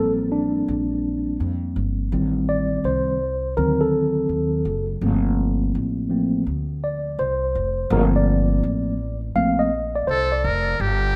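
Cool and nocturnal, this jazz-hop cut from a longer hip hop piece moves at an unhurried 83 BPM in G minor, with a swung sixteenth-note feel. A mellow tine electric piano, clean and heard through its built-in speakers, carries the harmony up front and takes a solo from the start until 10.8 seconds, moving through Gm11, Am7b5 and D7b9 before returning to Gm11. Beneath it, a pizzicato upright bass with gut strings sits in the low register, its woody, thumpy tone dark and close in the mix. Near the close, at 10.1 seconds, a trumpet with a metal mute enters for a brief melodic solo, brilliant yet thin and buzzy, with vibrato and a tape echo on its line. A moderate plate reverb gives the sound a soft tail, and the rough home demo mix keeps the whole thing unpolished.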